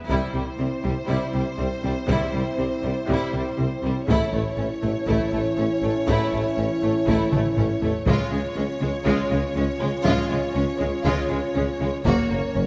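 A taiko ensemble struck with hard sticks drives this heroic, triumphant cinematic cue, with an acoustic, vintage, band-limited sound and a drum fill at 7.3 seconds. A French horn section holds sustained chords in a warm classical style with light vibrato. The melody sits in a lush, focused violin section, while a second violin section plays an intense, distant line and violas fill in the background. Underneath, cellos and a close, expressive chamber double bass section, both bowed with vibrato, share the bass with a very quiet, roomy tuba. The harmony moves from C to A, then to Db at 8.1 seconds and Gb at 12.1 seconds, and a moderate scoring stage reverb gives this short cut from a longer piece the grandeur of an epic film score.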